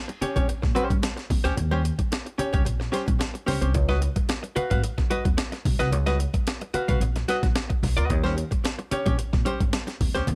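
A dry, close-sounding excerpt of strutting, gritty funk at 110 BPM in Eb mixolydian, built on a compressed, pitched-up breakbeat sampler-style drum kit with a thumpy kick and medium-tuned snare sitting up front. A dark, clean, picked hollow-body archtop guitar, also up front and treated with plate reverb, voices chords moving from a rootless Eb6 to Db9sus4 at 3.7 seconds and back to Eb6 at 8.1 seconds. A woody pizzicato upright bass with steel strings joins at 0.2 seconds, while bright, damped congas struck with hard hands sit in the background.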